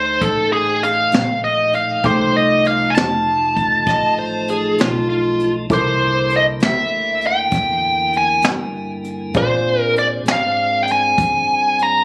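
A biting, overdriven lead guitar with analog delay carries the melody over a woody upright piano in the background, a piping tonewheel organ holding sustained chords through a slow rotary speaker, and a thumpy pizzicato upright bass, with a brushed jazz kit entering up front at 0.2 seconds. This laid-back, swaggering slow blues in 12/8 moves through dominant thirteenth chords, and an overdriven slide guitar played with fingerpicks adds a brief second line between 3.9 and 5.5 seconds. The sound is fairly dry, like a phone recording made in a club, and this is a short cut from a longer piece.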